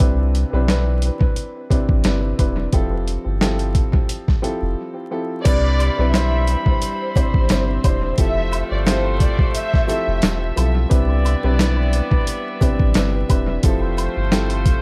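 Boom-bap hip-hop at 88 BPM in C major, confident and nostalgic, this section rides a gritty, pitched-down sampler drum kit with a thumpy kick, a round, deep dub sub bass, and a woody, boxy upright piano with delay, all over alternating Cmaj7 and Fmaj7 chords with a swung feel, vinyl crackle and an echo-heavy mix. Near the end of a short break, a dark, lush violin section takes up the melody from 5.4 to 10.4 seconds, and at 5.5 seconds a clear, tight horn section adds delayed stabs. Gut-string studio strings hold sustained chords in the background, and a very quiet, close egg shaker and woodblock join them.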